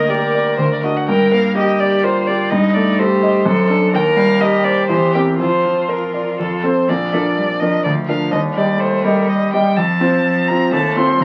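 A smooth, vibrato-laden violin sings the melody up front in this restless, urgent classical-period piano trio movement in 3/4 with a rubato feel, while a focused, distant bowed cello traces a second line and a clear, natural grand piano supplies the accompaniment, the whole passage, cut from a longer piece, set in moderate large-studio reverb beneath the crackle of a very old 78 rpm record.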